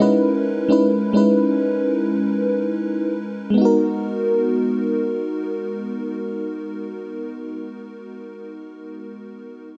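A moderate, lush hall reverb surrounds this brief, moody R&B fragment, cut from a longer piece. A lone FM electric piano, layered with a soft pad, carries everything from 0.0 to 9.7 s, sitting up front with a dreamy, warbling, vintage character. Its chorus adds a detuned shimmer, while a faint noise layer and triangle-like tone give each note a quick attack that decays into mellow haze. The harmony rests on a C#m9 chord before shifting to G#m9 at 3.6 s, lending the passage a sensual feel.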